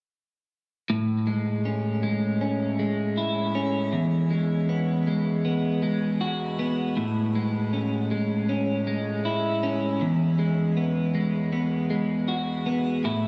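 A lone electric guitar, pushed to the edge of break-up, carries this short dream pop fragment cut from a longer piece, sounding twangy, picked and slightly gritty as it sits up front in the sound. Analog chorus and delay color its tone, and it ranges from E2 up to F#4 across its solo run from 0.9 to 13.3 seconds. The harmony alternates between Amaj7 and Eadd9 in a straight four-beat feel, giving the passage an ethereal, blissful glow. A moderate shimmer reverb hangs over the whole room, with a tail of 7.6 seconds. The recording has the character of a phone capturing a club space, with compression squeezing the guitar close and a hazy ambience around it.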